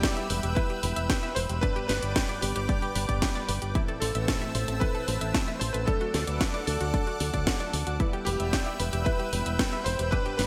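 A bright 1980s-style digital production bathed in a moderate, lush hall reverb frames this melodramatic, bittersweet Italo disco excerpt, cut from a longer piece and moving at 113 BPM in a straight 4/4 in E minor. A clear, vintage electric grand piano with a clangy low end carries the melody, treated with ensemble chorus and digital delay, while a thick, detuned unison pad holds sustained chords with a slow attack and long release. Behind them, a round analog pluck spins chorused, delayed arpeggios with a fast attack and short decay, and a dark, brassy synth brass adds stabs colored by ring modulation, filter sweep and vibrato. Up front, a punchy electronic kick and a house kit with a cracking snare and hi-hat sound layered and tape-warm, re-recorded in a small room, and a fingered electric bass with an envelope filter joins at 0.3 seconds. The harmony moves from Em to G, Am and D before returning to Em at 8.0 seconds.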